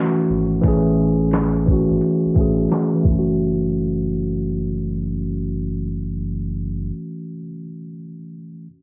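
A mellow tine electric piano opens this reflective, melancholic lo-fi hip hop excerpt at 0.0 seconds. It sits up front on an F#m7 chord in F# minor, and its clean tone is colored by cassette tape and a low-pass filter, with a filter sweep over the opening stretch. A round analog bass joins moments later, its deep, dark blend of sawtooth and sine giving sustained notes with a fast attack. At 0.6 seconds a sampler-style boom bap kit enters with kick, snare, hi-hat and handclaps; it sounds gritty, compressed and pitched down, with a thumpy kick and a medium-tuned snare, and it stays up front until it drops out at 3.3 seconds. The groove moves at 87 BPM in 4/4 with a lazy 16th-note swing, and light reverb and digital ambience lend the homemade cassette sound a soft, hazy space.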